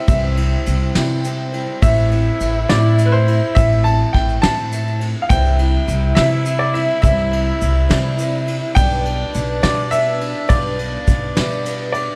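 A clear, woody upright piano carries the melody from the start, joined by a nasal, straight-muted French horn with vibrato on a second line, while a very quiet felt-muted upright piano with audible action noise adds a brief fill at 1.0 seconds and a boxy parlour guitar picks quietly in the background. Pizzicato upright bass and a soft brush kit with a tight kick sit up front, with a grainy tube shaker tucked behind them. This hopeful indie folk passage in 6/8 at 69 BPM moves through C, Am and G/B in C major, with a dark production and light reverb.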